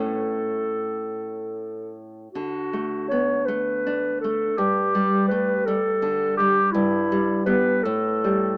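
A rough home-demo mix with a small-speaker sound and light studio reverb frames this short excerpt, cut from a longer romantic duo for clarinet and classical guitar. The mood is lyrical and tender, moving in a rubato 6/8 at roughly 50-56 BPM counted in dotted quarters, in D major with tuning at A4 = 442 Hz. A mellow clarinet carries the melody in a classical style between E4 and C#5, its tone distant and roomy yet placed up front. Beneath it, a fingerpicked nylon-string guitar supplies full-bodied, deep accompaniment from G2 to D4, also up front. Both parts play throughout the 8.6 seconds, passing through A, D, G5 and Em/G before settling on an A7 chord with its third omitted at 7.8 seconds.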